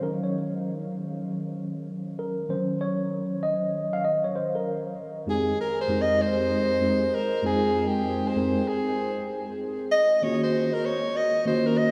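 A dreamy mix soaked in a huge ambient reverb gives this short hip hop excerpt a nocturnal, mellow haze, with the tail of the space hanging long behind the players. A clean, mellow tine electric piano opens alone, heard as if through its built-in speakers and set up front, carrying the accompaniment across a broad span of its range on a swung sixteenth-note feel. At 5.3 seconds a warm, close-miked soprano saxophone enters up front with a jazz-style solo melody, its line trailed by tape echo. The piano keeps accompanying beneath the saxophone until the fragment ends at 11.9 seconds, the harmony drifting through minor seventh and ninth chords.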